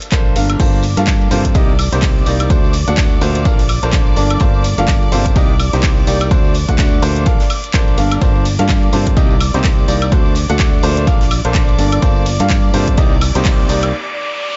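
A clear, woody upright piano riff, pumping with the sidechain and trailing dub echo, leads this energetic, bittersweet piano house excerpt over a swung groove of punchy, dry electronic kick, a layered house kit with metallic hats, handclaps, crash and woodblock, and a very quiet acoustic kit and tambourine. A growly fingered electric bass pumps beneath, while a smooth symphonic violin section enters at 0.6 s with bowed, vibrato-rich sustained chords cycling through Gm11, Cm7 and D7. An electronic riser arrives at 13.1 s and carries into a brief break at 13.9 s, within a dark, warm production.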